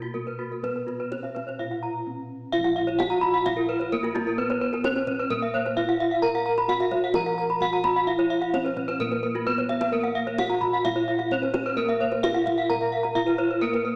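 Heard through a small-speaker sound in a moderate stage reverb, this ceremonial Balinese gamelan passage sets a mellow, softly padded bronze metallophone melody beneath two bright horn-mallet metallophones playing arpeggios, one of them up front, with the three metallophones tuned in pairs for shimmering, ringing beats over round bossed gongs carrying the bass and a tight kendang in the background that plays a brief fill at 9.6 seconds.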